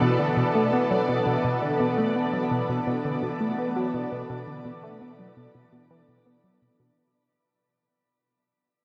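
Awash in a dark, wet shimmer of long reverb, this brief, fading cut of ambient, sequencer-driven space music drifts in an expansive, hypnotic mood, as a lush, thick, airy unison pad with chorus and phaser sustains chords up front, a tight, driving sawtooth sequence with a mellow filter pluck runs its evolving riff through chorus and delay, and a faint, bubbling, resonant texture with random filter steps hovers high above.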